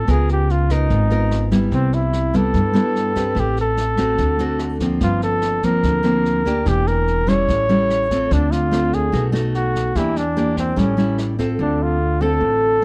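Bossa nova with a smooth, wistful mood, cut from a longer piece, where an up-front flugelhorn sings the solo melody with vibrato and a smooth top over fingerpicked nylon-string guitar that sounds full-bodied and deep with fresh strings. A dark, woody pizzicato upright bass anchors the low end, while a distant, roomy brush kit with a boomy kick, rim click and medium-tuned snare sits well back in the mix and drops out at 11.4 seconds. The harmony moves through jazzy chords such as Cmaj7, Am9, Gm11 and Em7b5 before settling on Dm7, all bathed in a studio reverb.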